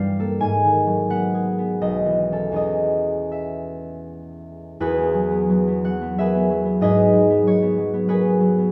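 A bright, ringing concert harp sits up front in a wet recital-hall reverb, its thumb-plucked notes spanning B1 to A5 in this short, graceful passage cut from a longer classical solo piece. Moving in a serene, rubato 3/4 at roughly 79-95 BPM in E major, the acoustic harp drifts through G#m7, B9sus4 and E6 before a new section opens on Emaj9 at 4.8 seconds and turns back to G#m7 at 6.8 seconds.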